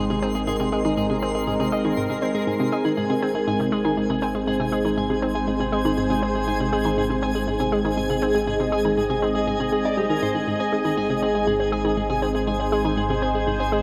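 Cosmic and luminous, this sequencer-driven ambient space music moves at 120 BPM in a straight 4/4, resting on a single Ab major chord throughout the 13.8-second clip cut from a longer piece. Up front sits a warbling, vintage sawtooth pad with detuned, resonant sustained chords and subtle chorus, alongside a nasal, wave-folded analog pluck riff carrying chorus and analog delay, and a slightly broken-up electric guitar playing fingered arpeggios through its own analog delay. Beneath, a round, deep analog bass holds a dark Ab with tube saturation, while a twinkling granular FM texture adds a bright octave-up shimmer, all set in a lush, wet hall reverb.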